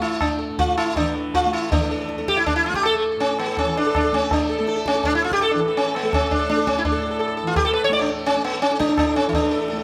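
Hindustani classical music in a devotional, serene mood, this short passage cut from a longer piece moves in a seven-beat cycle at 164 BPM in A major, and the pulse gradually speeds up across its 9.8 seconds. The sitar carries the melody from A3 to D5, sitting up front with a round, plectrum-plucked tone whose buzzing and sympathetic strings give it a shimmering halo. Beneath it, the tanpura holds a softly plucked drone between A2 and A3, its own buzz and shimmer sitting well back in the mix. The high-tuned tabla adds ringing acoustic strokes that sound close and dry. All three parts play throughout, with a new section beginning at 1.7 seconds, and the whole is set in a moderate recital hall reverb that lends the sitar and tanpura a gentle glow.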